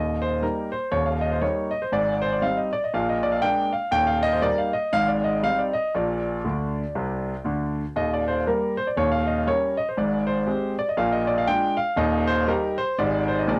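A clear, intimate concert grand piano carries this playful, swinging stride jazz solo from start to finish, its deep bass and audible action noise sitting up front with a polished presence and the character of cassette tape. The chords cycle through an Eb major progression, and the piano adds a fill between 6.4 and 8.0 seconds. It sounds like a home cassette recording in a small booth, and it is cut from a longer piece.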